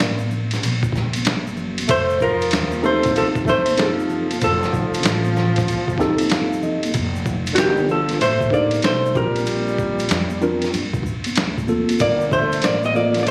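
Jazz-hop with a nocturnal, mellow mood, swinging at 95 BPM as a short cut from a longer piece, with a dark, clean hollow-body jazz guitar carrying the melody through plate reverb over a breathy, subtone tenor saxophone second line, a woody, growly pizzicato upright bass, and a gritty, pitched-down boom bap kit with a thumpy kick sitting up front. Bright tube shaker and hard-hand congas stay in the background, while a worn, slightly out-of-tune tine electric piano joins at 2.8 seconds and plays a fill from 5.7 seconds before the harmony shifts at 6.9 seconds. The phone-in-the-room recording adds a compressed feel and moderate studio reverb to the chords moving from Gmadd9 and F7 through F13 and Bb6 to Gm11.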